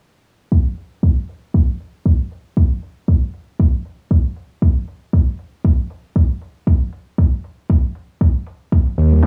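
A deep, tape-warm electronic kick drum leads this late-night deep house excerpt at 117 BPM with a light swing, joined at 0.8 seconds by a fat snare and metallic hi-hats, while a grainy tube shaker and ringing congas sit in the background near the close and a smooth, gliding sawtooth synth bass with vibrato and sidechain pumping enters at 9.0 seconds, over a dry, gritty cassette-tape room ambience.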